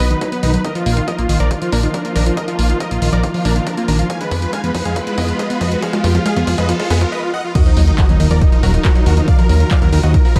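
A huge, airy supersaw melody with sidechain pumping and tape echo leads this bittersweet, emotional uplifting trance excerpt, over a nasal, chorused analog pluck arpeggio, a fat, up-front analog bass, a punchy electronic kick, tape-warm drum-machine hats, handclaps and crash, and lush, distant strings held very quietly underneath, as a drum fill and a background riser build toward a brief break at 7.1 s before the drop and sub-drop impact land at 7.6 s.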